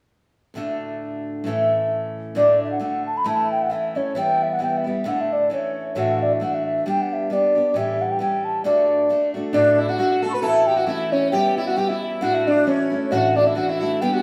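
A mellow, woody baroque flute with vibrato carries the bright, cheerful melody of this swung Celtic folk polka from 2.4 seconds, over a picked steel-string acoustic guitar accompaniment that opens the piece at 0.5 seconds, before a buzzing, shimmering sitar joins up front with a second line at 9.5 seconds, the band playing live together in a large, reverberant studio.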